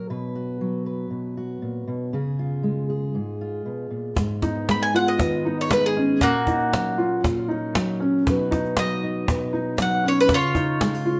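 Set in a moderate studio room, this haunting, melancholic acoustic folk excerpt in G# dorian at 118 BPM opens with a dark, fingerpicked steel-string guitar alone, its finger squeaks audible, until a snappy, close and dry cajon enters at 4.2 seconds, followed moments later by soft, mellow arpeggios from a felt-muted upright piano, and a bright, double-strung bowl-back mandolin with plate reverb steps up front at 4.7 seconds to carry the melody over chords moving from G#m through F#/A# and B to C#add9.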